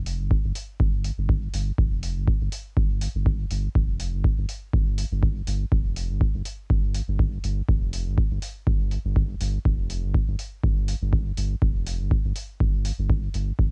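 A soft, round sub bass of triangle and square waves opens this cavernous, deep dub techno excerpt at 122 BPM in 4/4 with a light 55% swing on the sixteenths, sitting between F1 and G1 with tube saturation and sidechain pumping; quieter metallic electronic hi-hats follow a moment later, and an up-front analog kick with a tape-warm thump lands just after, all captured dry as a home cassette recording.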